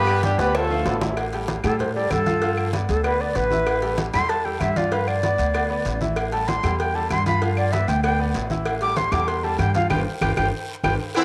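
A breathy, reedy concert flute takes a fiery solo from 1.6 seconds, up front and close-miked with vibrato and a crisp attack, after a punchy horn section in octave doubling opens the bar and returns at 11.2 seconds, both carrying a cassette tape tint. This driving salsa excerpt runs at 192 BPM over a bright, brilliant upright piano, a thumpy gut-string upright bass played pizzicato, and a background of low-tuned congas, high-tuned cowbell and bongos, ringing agogo bells and timbales and woody claves, with a raspy guiro sitting close. Drum fills, a band accent near the end and a chord progression circling G9 keep the energy high inside a moderate spring reverb with a homemade cassette feel.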